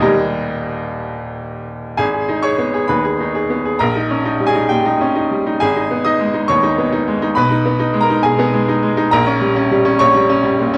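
A brilliant, up-front baby grand piano opens alone on a D# chord, launching a passionate, agitated virtuoso classical study in G# minor at 134 BPM in 4/4, played with free rubato across a range from D#1 to D#6. At 2.0 s a new passage settles onto G# minor and moves through D#7/A#, G#m/B and Gdim/Bb, all heard through a wet recital-hall reverb. The open piano tone is colored by worn, warbling old cassette tape with a wavering pitch drift, and the clip ends abruptly at 10.8 s as a cut from a longer piece.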